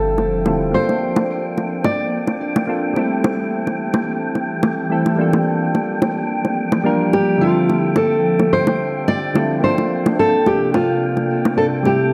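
A deep electronic sub drop opens this short cut from a longer sunset chillout piece, landing together with a thumb-plucked nylon-string guitar melody, mellow electric-piano-like synth keys, an ethereal pad and a dark, breathy wind-like tuned noise texture held on G5. Soft-handed, low-tuned bongos come in at 0.2 seconds, sounding close and dry, and keep a relaxed 108 BPM groove in 4/4 with a light swing on the sixteenths. The guitar, classical in tone with fresh strings and a touch of delay, sits up front alongside the round, fast-decaying keys, which carry chorus, a low-pass filter and digital delay. Beneath them, the full-bodied, detuned pad rises slowly and lingers through ensemble chorus, phaser and a filter sweep across the whole passage. The guitar steps out after its opening phrase and returns at 7.1 seconds, while the harmony drifts through Dm11, Bbmaj9, Am7 and Gm9 before circling back to Dm11 and Bbmaj9. 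A lush hall reverb gives the warm, easy mood an open, spacious air.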